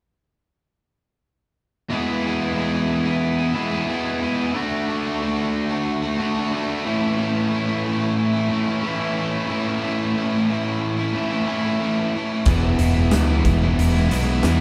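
At 1.9 seconds, two bright, crunchy overdriven electric guitars open this sunny, confident classic rock excerpt in E mixolydian, picking an up-front riff at 91 BPM in straight 4/4 over E, D and A chords; at 12.5 seconds a warm fingered electric bass and a huge arena drum kit, with a punchy kick and pumping room sound, join the band for the return to E, all captured live together in one small room.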